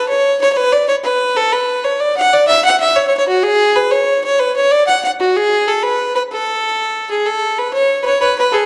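Celtic folk in a lively, cheerful mood, this short excerpt from a longer piece moves in 6/8 at 125 BPM, counted in dotted quarters with a straight feel. A single bowed fiddle carries the whole passage alone from 0.0 to 8.7 seconds, ranging from F#4 up to F#5. Its tone is clear and biting with an earthy edge, touched by light vibrato, and it sits close and up front in the mix. The melody runs through one section and begins it again at 7.3 seconds before the cut. A wet recital hall reverb with a 1.5-second decay surrounds the fiddle, and the production leans dark overall.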